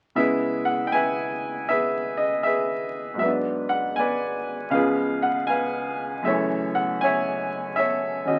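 Solo jazz with a moody, swinging feel, played in 4/4 with a lilting swing on the eighth notes. A single upright piano carries the whole piece, its tone clear, woody and natural, sitting up front and ranging from deep bass notes to the upper middle of the keyboard. The harmony moves through dusky minor-seventh and half-diminished colors before turning to a dominant seventh chord at 4.7 seconds and settling on another minor seventh at 6.2 seconds. The sound carries the character of a very old 78 rpm record, with vinyl crackle riding beneath the playing and a moderate studio ambience giving the instrument a modest sense of room. Lasting just over eight seconds, this brief fragment is cut from a longer performance.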